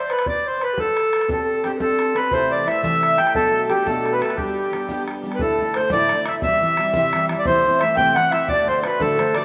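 A straight 6/8 jig at 117 BPM, counted in dotted quarters, drives this rollicking, bright Celtic folk excerpt, where a reedy, up-front accordion carries the melody between G4 and G5 over a very quiet, distant wooden flute with an airy, soft-attacked vibrato second line and a damped, tight, band-limited bodhran, joined at 1.3 s by a full-bodied picked jumbo steel-string acoustic guitar moving through chords such as Csus2, Bm7, G and D, all set in a lush hall reverb within a rough home-demo mix.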